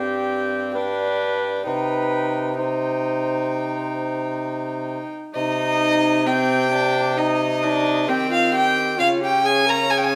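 From the first moment, a mellow cornet melody, an airy-bowed, nasal violin held up front on a second line above it, a reedy gut-string viola accompaniment and a soft-attacked, distant bassoon bass all sound together in this courtly yet rustic Renaissance-style consort dance in C minor at 66 BPM in a straight 4/4, tuned to A4 = 436 Hz. Heard from further back in a stone room with a one-second reverb, the harmony moves from Gsus4 to G and settles on C minor, then moves into a second section at 5.4 s and turns to Db at 9.0 s before this fragment of a longer piece breaks off.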